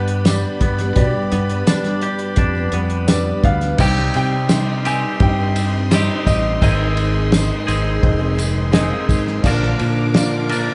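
Wistful and reflective, this folk rock and heartland rock excerpt sets a twangy, compressed electric guitar riff over fingered electric bass and a cloth-damped, thuddy drum kit with a fat snare, while a shimmering twelve-string acoustic guitar, a woody, slightly detuned upright piano, lush distant strings and a jingly tambourine sit in the background; an intimate grand piano melody with audible action noise appears from 3.1 to 7.6 seconds, all in a live-room sound with moderate studio reverb.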